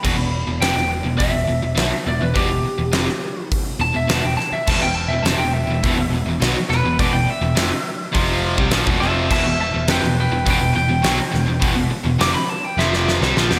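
Driving and aggressive, this hard rock excerpt moves at 104 BPM in E minor, with a twangy, slightly broken-up lead guitar soloing over the Em chord through analog delay from the start. Beneath it, a cranked stack guitar and a distorted electric guitar play overdriven riffs in the background, joined at 4.7 s by a tight, double-tracked guitar with distortion and slapback echo, while a growly picked bass holds the low end. A huge, up-front arena drum kit with a fat snare, punchy kick and bright cymbals drives the track, breaking into a fill at 12.8 s, all set in a big arena sound with scoring stage and small room reverb.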